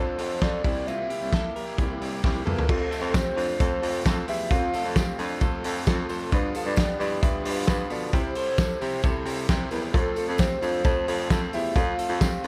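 Dark, lightly reverberant production frames this bright, nostalgic slice of jangly indie pop, where a hollow, woody clarinet-like synth lead with chorus and vibrato carries the melody over a smooth-topped baritone saxophone bass with scooped notes, an overdriven semi-hollow guitar through spring reverb and twangy clean electric guitar arpeggios with tape echo, while a loose, gritty drum kit with a fat snare and punchy kick sits up front, a drum fill at 2.2 seconds leads into a worn, slightly detuned upright piano at 2.7 seconds, and a jingly tambourine joins quietly in the background at 2.9 seconds.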